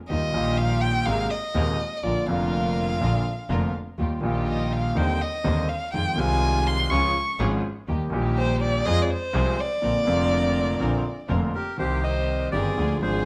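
A rubato tango in 4/4 at 123 BPM, this dramatic, sultry fragment is cut from a longer piece and tuned slightly flat of standard pitch. A dark, woody violin with vibrato sits up front and carries a solo through the first 11.8 seconds. A polished grand piano with long sustain supports it from the low register, and a bowed double bass with a smooth, boxy tone anchors the bottom. A studio string section with gut-string tone and light vibrato adds period-style stabs from the background. At 11.5 seconds a reedy bandoneon takes up the melody, just before the music moves into a new section on C minor at 11.8 seconds, all set in a moderate large studio reverb.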